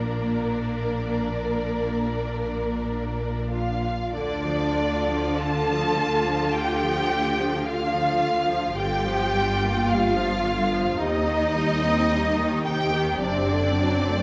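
Warm and lyrical, this slow romantic movement for string orchestra drifts with rubato at 46-55 BPM in 4/4, as a rich, up-front first violin section sings the vibrato-laden melody over a soft-attack second violin line, a clear, focused viola accompaniment, a lush cello bass with a smooth top and an even, distant double bass section, all bowed together through a recital-hall reverb as the harmony moves from Bb to Dm at 4.1 seconds and settles on D7/F# at 13.2 seconds.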